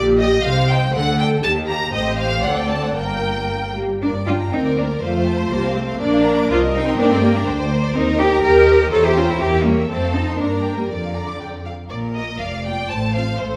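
In a duple metre with a flexible, rubato feel, this quick classical-period movement for string orchestra moves with a spirited yet graceful air, cut from a longer piece. A violin section carries the melody with a rich, lush, focused, vibrato-laden bowed tone that sits at a distance, and a second violin line joins at 0.2 s, reaching higher. The viola section fills in the accompaniment up close with expressive vibrato until 13.2 s. Beneath them, the cello section anchors the bass with a smooth top, joined far lower by a symphonic double bass section whose soft attack gives the foundation a gentle weight. The harmony turns from a minor key to a brighter major one at 8.0 s before the opening material returns at 11.9 s, all set in the reverberant glow of a stone room.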